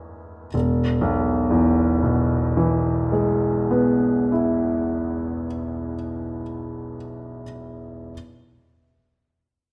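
An Emaj7 chord on a clear, intimate baby grand piano opens this dreamy, serene fragment of an impressionist classical solo, settling onto E major at 0.5 seconds and unfolding in a slow, rubato 4/4 at around 44 BPM. The piano sits up front with a natural tone, long sustain and audible action noise, spanning E1 to G#6 across its 8.1 seconds. A wet recital hall reverb with a 1.6 s decay surrounds the instrument.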